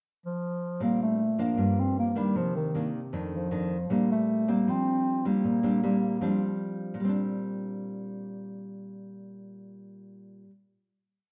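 A breathy, vibrato-laden bass clarinet carries a smooth, motif-based jazz melody up front in this short, sunny and romantic bossa nova in Bb major at 156 BPM, entering at 0.3 seconds over a woody, fingerpicked nylon-string guitar that joins at 0.8 seconds with thumb bass and syncopated plucked chords through Bb69, Gm7, Cm9 and F6 before ringing out on a final chord until 10.6 seconds, all set in a dark production with a large studio reverb.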